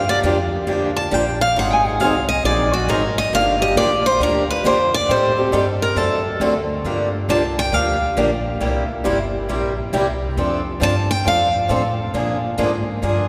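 This fiery, bittersweet stretch of gypsy-jazz string swing, cut from a longer piece, opens with the whole quartet at once in G minor at 136 BPM, swinging over Gm7, Ab9 and an Am7b5-to-D7 turn. Out front, a picked steel-string guitar with a bright concert tone carries the solo melody until 8.2 seconds, then returns briefly at 10.8 seconds. Beneath it, a parlour-sized steel-string guitar with fresh strings and a boxy body keeps up accompaniment alongside a warm swing-style guitar whose picking brings audible finger squeak. An upright bass played pizzicato on gut strings adds a woody, dark, thumpy pulse at the bottom. The group sits in a church or concert hall, and a long, wet cathedral reverb lets every note hang in the air as the chords move through C7 and F6 toward Bb7.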